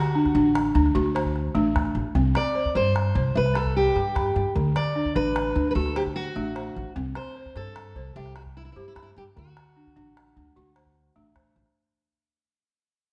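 A buzzing, woody balafon played with rubber mallets weaves arpeggios through this hypnotic, flowing West African string and xylophone piece at 100 BPM in a straight 12/8, sounding over a D-to-C sway while a dark fingerpicked steel-string acoustic guitar carries the melody with audible finger squeak, a pizzicato upright bass anchors the low end, and a deep calabash keeps the pulse, all set in a moderate recital hall reverb and fading out across the whole clip, which is cut from a longer piece.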